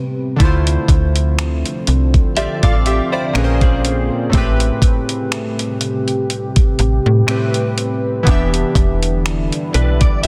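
Late-night and sensual, this slow 61 BPM contemporary R&B excerpt in A minor sways on a lightly swung sixteenth feel, with gritty, thumpy sampler-style drums (finger snaps, hi-hat and kick) and a snappy, metallic FM slap bass up front. Round, detuned analog keys with chorus and a deep, evolving ambient pad with sidechain pumping carry chords moving from Dm7 through Bbm7 and Am7 to Em7, while a clean, direct-recorded electric guitar adds picked arpeggios with chorus and delay from 2.4 s, in a dense, heavily limited modern master with light reverb.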